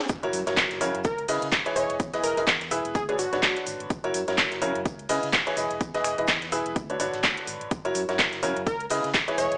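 A clear, worn grand piano stands up front with a riff over sidechain pumping, driving this euphoric, uplifting piano house drop cut from a longer piece. Under it, an up-front house kit of finger snaps, handclaps and metallic hats joins a punchy, tape-tinged electronic kick with a 58% swing on the 16ths, while a very quiet gated 80s kit adds hi-hat, shaker and a medium-tuned snare in a bright stone room. A growly, amped fingered electric bass pumps beneath through a high-pass filter, and a very quiet electronic impact marks the opening two seconds. A catchy, detuned unison lead of sawtooth and sine with a noise layer and a filter sweep plays from 1.0 to 3.6 seconds and returns at 8.7 seconds, trailed by analog delay. Chords move through F#7, C#m7, Emaj7 and Bmadd9, and the whole mix carries a light reverb and a cassette-like, small-speaker color.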